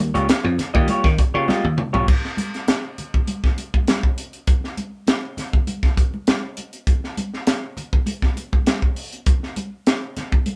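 Gritty, energetic funk at 100 BPM in a straight 4/4, cut from a longer piece: a growly, foam-muted thumbed slap bass and a slightly broken-up, lo-fi electric guitar through a small old amp sit up front on an Eb9 chord until a drum fill at 1.5 seconds, after which both stop at 2.1 seconds and the crisp fusion kit, with its punchy kick, high-tuned snare, bright cymbals and pumping room, carries on beside damped, thin-skinned congas with light reverb, as of a band playing live in one room.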